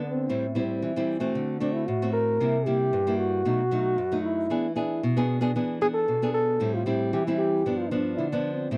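A straight 4/4 samba pulse at 114 BPM carries this playful, festive excerpt in A minor, where a mellow, breathy trombone plays a close-miked jazz solo melody with vibrato over small, up-front fingerpicked nylon-string guitar accompaniment moving through Am7, D7, C7, B7, E7 and G7, all captured in a dry, close 1970s-style studio sound with light reverb.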